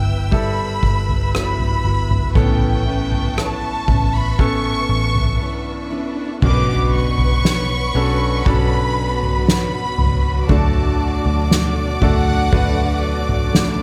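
Tender and emotional, this pop ballad excerpt opens with a lush, vibrato-rich violin section singing the melody over clear concert grand piano, fingerpicked steel-string acoustic guitar with a hint of finger squeak, sustained background strings and a dark, round, foam-muted electric bass, joined a moment later by a soft-mallet drum kit with a boomy kick and fat snare, all in a small room reverb, while a very quiet electronic swell leads into an impact at 6.4 s, where a second violin line joins.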